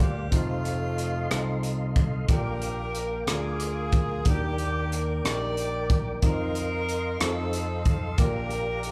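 Soulful and hopeful, this slow gospel excerpt moves at 61 BPM in a straight 6/8 in Bb major, with a bright, tight saxophone section carrying the melody with light vibrato over a concert grand piano's deep-bass accompaniment and a mellow, flute-like tonewheel organ holding sustained chords through a slow rotary speaker and chorus vibrato. A punchy, amped fingered electric bass sits up front, while a crisp fusion drum kit enters at 0.3 seconds on hi-hat, punchy kick and rim click, its small room pumping. The band plays live in one room under a moderate large studio reverb, the chords moving from F7 through Bb6 and Ebmaj7 to an F7sus4 and F7 before settling back on Bb6.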